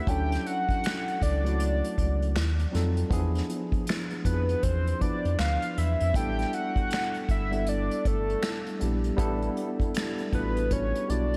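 Relaxed, soulful neo-soul R&B with a swung sixteenth-note feel, this short cut from a longer piece moves through Dmaj9, D#dim7, E7b9 and A7sus4. Up front, a hollow, woody square-wave lead carries the melody with vibrato, chorus and analog delay. Beside it sits a worn, slightly out-of-tune tine electric piano, lightly overdriven and heard through built-in speakers, while a round, deep analog bass and an airy acoustic drum kit played with bundle sticks (finger snaps, hi-hat, punchy kick and snare) fill a small room touched by light reverb.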